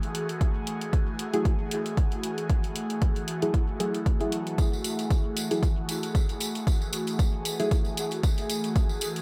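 This cavernous, hazy dub techno excerpt at 115 BPM in F# minor opens on an airy, breathy pad holding an F#m9 chord, its detuned sustain colored by chorus and phaser and pumping with sidechain, over dark, small-room electronic hi-hats. A punchy, up-front kick arrives at 0.4 seconds, and from 1.3 seconds deep, full-bodied chord stabs with a nasal edge, a filter sweep and a fast, decaying attack trail into dub echo. A jingly acoustic tambourine joins at 4.6 seconds, set in light digital ambience within an echo-heavy mix as the swung groove rests on that single chord.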